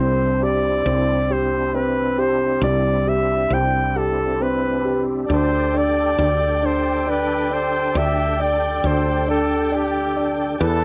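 A warm, up-front flugelhorn carries the melody in this melancholic, aching six-eight pop ballad, its punchy, scooped notes colored by vibrato as it moves between G4 and G5. Beneath it, a dark, mellow baby grand piano supplies the accompaniment while a tonewheel organ holds full, lightly overdriven chords through chorus vibrato and a slow rotary speaker. A growly, round fretless electric bass sits up front with a direct, hollow-body tone. At 5.3 seconds, as the harmony shifts from Cadd9 to Gsus2/D, a dark studio violin section enters with a soft-attack, woody second line high above, touched by tape echo. The horn, piano, organ and strings carry the character of a home cassette recording in a booth with moderate ambience, and this brief excerpt is cut from a longer piece.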